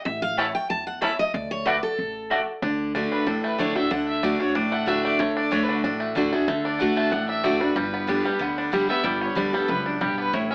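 Joyful and rustic, this bluegrass excerpt from a longer piece moves at a brisk 187 BPM in 4/4 with a light swing on the eighth notes, set in D major and passing through A, D and G chords. A picked dreadnought steel-string acoustic guitar opens with a bright, full-bodied solo, up front in the mix, running until 2.6 seconds. Underneath, a woody pizzicato upright bass holds the low end, while a twangy, percussive banjo played with fingerpicks carries the melody, and a round, double-strung mandolin adds stabs during that opening passage. At 3.1 seconds a single bowed fiddle joins the melody, sounding biting and nasal with light vibrato, though set somewhat distant. The whole recording has the sound of AM radio, with a moderate studio reverb.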